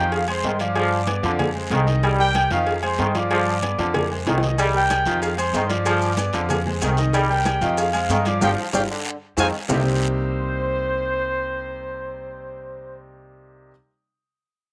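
A driving, fiery salsa rhythm at 188 BPM in straight 4/4 and C minor is carried by ringing congas, tight, high-tuned cowbell and bongos, metal-shell agogo bells and timbales, and a raspy guiro, with grainy maracas joining at 4.6 s and a drum fill and full band accent arriving at 8.4 s. Up front, a woody, growly pizzicato upright bass anchors a mellow, smooth-topped trumpet section on the melody, while a punchy, vintage trombone section plays a second line and a brilliant grand piano with audible action noise accompanies over Fm, G7 and Cm7 changes, with slapback echo on the horns, piano, agogo bells and timbales. The percussion and trombones drop out at 9.8 s, leaving trumpets, piano and bass in this dry, outdoor cut from a longer piece.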